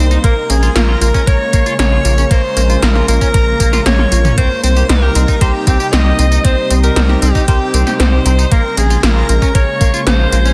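Driving and moody, this synthwave excerpt features a bright, punchy alto saxophone as soloist with vibrato, carrying the melody through delay and shimmer reverb while a vintage string machine of violins holds a shimmering second line high above in the background. A thick, detuned unison pad and a round, deep analog bass both pump with sidechain beside the thumpy electronic kick, as a very quiet analog pluck runs arpeggios and a clean, picked semi-hollow electric guitar plays a riff bathed in lush chorus. The 80s pad drums bring metallic hats, tambourine and an overdriven gated snare and toms, with a drum fill at 3.9 seconds leading into the move from Bbm7 to Cm7 at 4.4 seconds, all sealed in a dense, heavily limited modern master.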